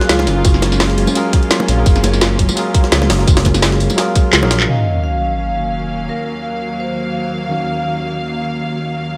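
This excerpt of rolling, melancholic liquid drum and bass at 170 BPM in Eb minor opens on a Gbmaj9 chord, with a clean tine electric piano through analog delay, dark, bowed chamber strings pumping under sidechain, and a ringing vibraphone melody with slow motor vibrato, bathed in a lush, dreamy hall reverb. A tight, up-front electronic kick, a low-pass-filtered kit with a woody snare, metallic hats, handclaps and tambourine, a gritty, pitched-up jungle kit in the background, very quiet low-tuned bongos and a smooth sawtooth synth bass with tube saturation drive the drop, which closes with a drum fill at 4.3 seconds. At 4.7 seconds the beat and bass fall away to an Ebm9 chord as an up-front sub drop impact lands and the vibraphone returns over the piano and sustained strings.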